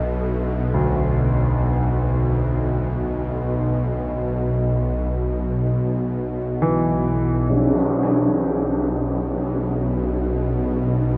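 The bowed-like drone dominates this dark ambient excerpt in B minor, a tense, string-like layer with a bright, detuned sawtooth edge, ring modulation and vibrato, held up front with its own reverb from 0.0 to 11.2 seconds beneath a very quiet, moody square-wave pad sustaining a Bm7 chord until 7.5 seconds. A polished baby grand piano plays low arpeggios through tape echo from 0.7 seconds, fading in after a brief, dark tam-tam stroke at 7.5 seconds, when the harmony drops away. Set in free time and bathed in a huge, cavernous reverb, the piece feels brooding and vast.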